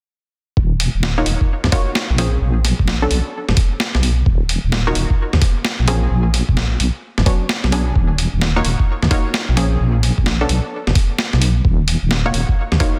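A deep, dark wobbling bass with chorus and a thumpy, gritty kick open this bouncy, soulful two-step UK garage excerpt at 0.6 s, soon joined by a pitched-down, sampler-style boom bap kit with hi-hat and a high-tuned snare, and then by punchy, wave-folded chord stabs with chorus and delay moving through Ebm7, Bbm7 and Bm7, within light digital ambience and a dense, heavily limited modern master.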